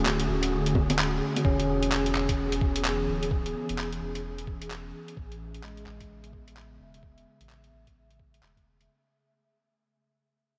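Future garage at 129 BPM with a swung 16th-note feel, this nocturnal, melancholic excerpt drifts through Dmaj7, E and Aadd9 under a huge, dreamy reverb, as an ethereal detuned pad, a deep round dub sub bass and a bell-like tine electric piano pump against the sidechain, the piano's tape echo and filter sweep adding motion while a dark, breathy wind-like noise texture hangs in the background, muffled, pitched-down sampler-style bongos, handclaps and hi-hat sit up front, and a thumpy, tape-warm electronic kick joins at 0.8 s, all while the whole fragment steadily fades out from start to finish.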